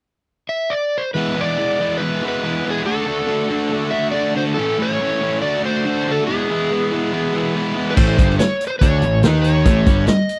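A straight, driving 4/4 pulse underpins this short, raunchy cut of blues rock and southern rock in the power-trio mold. An overdriven slide guitar opens the melody at 0.5 s, its warm, fingered tone carrying a slapback echo. A bright, double-tracked fuzz guitar joins at 1.2 s with a compressed, distorted riff as the harmony moves through E7, D, A, D7 and E. At 8.0 s the band lands on A as a round, dark fuzz bass and a vintage acoustic drum kit arrive together, the kit pairing a tight kick and medium-tuned snare with hi-hat, crash and dark cymbals. The sound is dry and close, like a 1970s studio session with light reverb, and every part sits up front.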